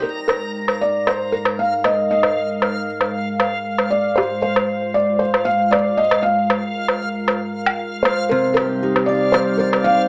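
A woodblock, muffled and pitched down, sits up front in a straight 4/4 at 116 BPM, driving this short, intimate, autumnal folktronica excerpt through chords moving from Absus2 to Fm/Ab and on to Cmadd9 at 8.3 seconds. A felt-muted upright piano carries the melody with a soft touch and audible action noise, over a warbling, nostalgic tape-like pad with chorus and a reversed, dreamy swelling texture holding a high F5. The bell-like celesta with tape echo and the full-bodied fingerpicked steel-string guitar arpeggios return together at 8.3 seconds, all heard through a wet studio reverb with a small-speaker sound.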